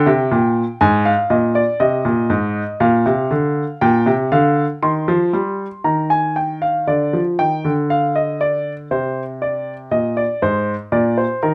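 A straight, unhurried 4/4 pulse at 59 BPM carries this stately, elegant baroque-style two-part invention in Ab major, taken from a longer piece. A solo grand piano, up front and intimate with audible action noise, spans Ab2 to C6 in a clear, natural tone set in moderate studio reverb. Harmony moves from Ab through Bb and Eb before shifting at 6.9 seconds to a Dmadd11, then Ab/C and Bbadd9.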